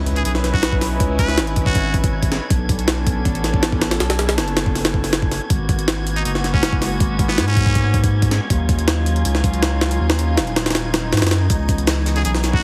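A raw, frenetic jungle groove at 160 BPM drives this drum and bass excerpt, built on a pitched-up, gritty sampler-style kit with a thumpy kick and high-tuned snare sitting up front over a thick, saturated sub bass, while a crunchy, saturated breakbeat kit with filtered hats, shaker and snare slips in behind it at 11.5 seconds. A dark, reedy chamber string section carries sustained minor ninth chords through vintage 12-bit grit, an airy, wind-like noise layer breathes in the background, and a faint electronic impact marks the opening. A raspy, growling trumpet with a straight mute plays short phrases at 0.2 and 6.2 seconds, trailed by dub echo, all within a light small-room ambience and a heavily compressed, radio-like sound.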